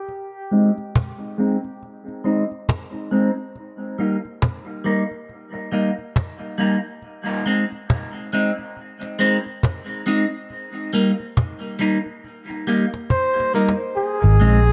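Echo-soaked and hazy in a small room, this laid-back dub reggae excerpt at 69 BPM in Ab major sets a woody, dry cajon under a bright, twangy clean electric guitar run through phaser, low-pass filter sweep and dub echo across Ab and Eb chords, with a drum fill from 13.1 seconds as a distant, roomy flugelhorn enters with scooped notes and a round, foam-muted vintage fingered bass joins at 14.2 seconds.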